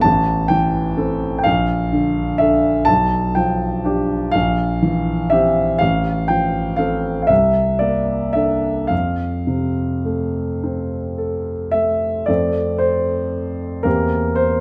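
A close, detailed recording with light reverb places a concert grand piano up front, its tone open with deep bass and long sustain. This is a dreamy, serene romantic nocturne for solo piano in F major, moving in a slow, rubato 12/8 at roughly 35-43 dotted-quarter beats per minute. The piano ranges from A1 to A5, and the harmony drifts from A minor through Bbmaj7, G7/B and C7/Bb before settling on F/A, Csus2 and F. A new section begins at 12.3 seconds, touching C7/E near 13.9 seconds before the clip ends at 14.6 seconds, cut from a longer piece.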